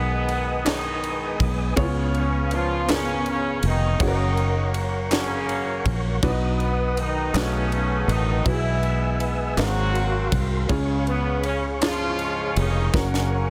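A clear, vintage-toned horn section carries the melody up front, its vibrato and octave doubling giving this slow, soulful gospel passage a hopeful glow. It moves in a straight 6/8 at 54 BPM counted in dotted quarters, taken from a longer piece. A woody, slightly detuned upright piano with short sustain plays the accompaniment, while a soft, flute-like tonewheel organ holds chords in the background through a slow rotary speaker and chorus vibrato. A bright, foam-muted fingered electric bass sits punchy and direct at the front. The airy, polished fusion kit enters at 0.3 seconds with a punchy kick, ride cymbal and high-tuned snare, and very quiet, hollow group handclaps join at 0.7 seconds, before a drum fill at 12.9 seconds lands on F#. The harmony travels from G#m/B through C#7, F#, B7, E/B and G#13 to C#, all set in light small-room reverb with a dense, heavily limited modern master.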